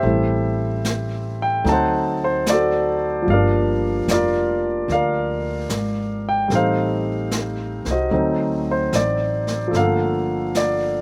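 Jazz ballad in G minor at 74 BPM, swung and melancholic, drawn from a longer piece, with a wistful progression that moves from Am7 through D7b9 to Gm7 and returns to Gm7 at 9.7 seconds. An intimate concert grand sits up front playing accompaniment, its long sustain and audible action noise giving the sound a polished presence, while a woody pizzicato upright bass holds the low end. A jazz brush kit of brushed snare, snare and hi-hat sits further back, and the whole performance is dry, captured outdoors with little reverb.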